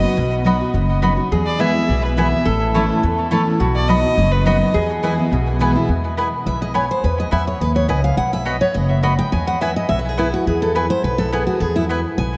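Bluegrass at a brisk 210 BPM in E major, rustic and driving: a clear, focused bowed fiddle with light vibrato carries the melody, while a nasal, metallic lap resonator guitar played with slide and fingerpicks adds a second line until about 5.7 s, both touched with delay. Beneath them run a bright, full-bodied picked steel-string acoustic guitar up front, a thumpy, woody pizzicato upright bass on gut strings, and delayed mandolin stabs on double strings, with the acoustic guitar taking a solo from 5.9 s in a dreamy mix soaked in cathedral reverb.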